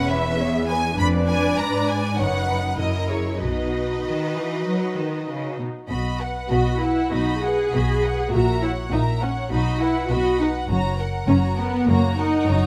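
A spirited, cheerful classical-period movement for string orchestra, cut from a longer piece, opens with all five sections bowing together with vibrato: a lush violin section carries the melody up to Cb6, a more distant violin section plays a second line, an up-front, warm viola section supplies the accompaniment, and clear cellos and smooth, even double basses share the bass. At 99 BPM in 4/4 with a rubato feel in B major, the harmony moves from C#m7/E through Fdim7 to settle on B at 3.4 s, and a new section begins at 5.9 s before ending on F#. Close, detailed microphones and light reverb frame the ensemble.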